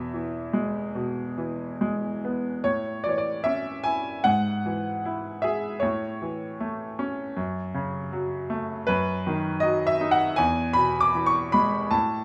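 Calm and warm, this lyrical classical solo piano passage in A major, cut from a longer piece, moves at about 77 BPM in 4/4 with an uneven, rubato pulse, its grand piano bright and brilliant yet worn, sitting up front in a moderate recital-hall reverb and spanning E2 to D6 across 12.2 seconds.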